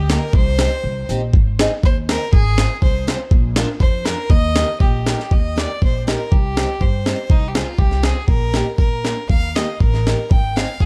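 Alpine folk in an alpine dance band style, bouncy and jolly at 121 BPM in a rubato 2/4 in Eb major, this clip from a longer piece sets an earthy, distant bowed fiddle with light vibrato and tape echo over woody pizzicato upright bass and a bright picked steel-string guitar, while a gritty, compressed, pitched-up jungle sampler-style kit with a thumpy kick sits up front, with a brief break at 0.8 to 1.3 seconds, before the music moves into a new section at 5.3 seconds, all within a dark, studio-ambient production.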